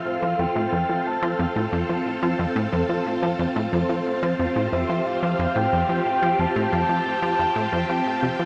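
Ambient, sequencer-driven space music at 90 BPM in a straight 4/4, this short excerpt from a longer piece sits on an F major chord and feels expansive and luminous. A mellow, horn-like synth lead carries the melody from the first moment, its round, warbling tone softened by chorus, delay and vibrato. Beneath it, a phased string machine holds sustained chords with a swirling, vintage shimmer, bright and up front with a slow attack and long release. From 0.2 s a plucky analog bass adds a punchy, funky riff whose fast-attack, wave-folded tone is echoed by delay. Everything is bathed in a shimmering reverb with a long tail of 8.3 seconds, giving the sound a vast, floating sense of space.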